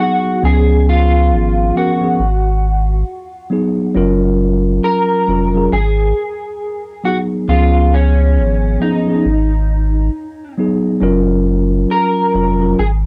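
A dark, slightly broken-up electric guitar through a small old amp carries the picked, lo-fi melody with an ensemble chorus in this nostalgic, melancholic lo-fi hip hop excerpt at 68 BPM in G# dorian, backed by a mellow, clean tine electric piano coloured by cassette tape and a deep, round sine sub bass with tube saturation that enters at 0.4 seconds, moving through C#7, G#m7 and F#maj7 with a swung 16th-note feel in a dry, gritty recording with light reverb.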